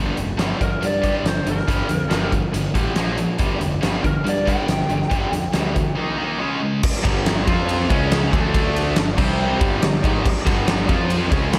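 A huge, up-front arena drum kit with a fat snare, punchy kick and bright cymbals drives this aggressive, menacing hard rock fragment, cut from a longer piece, with a fuzzy overdriven picked bass and two riffing guitars: a searing high-gain one and a cranked stack guitar with slapback echo set further back. From 0.6 to 6.4 seconds a lo-fi, overdriven lead guitar through a small amp carries the melody. At 6.8 seconds a very quiet, shimmering retro synth pad with a slow attack and chorus enters with sustained chords, all within a big arena sound.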